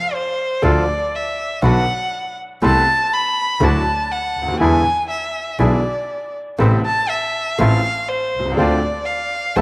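A moderate spring reverb surrounds this tense, dramatic tango fragment in a rubato 4/4, where a warm, up-front bowed violin sings an expressive solo line with vibrato and portamento from the opening instant. At 0.6 seconds it is joined by a bright, woody upright piano accompaniment, reedy bandoneon stabs set in the background, and a clear, biting bowed double bass with an earthy, nasal edge, moving through chords like Dm, E7 and Fmaj7/A.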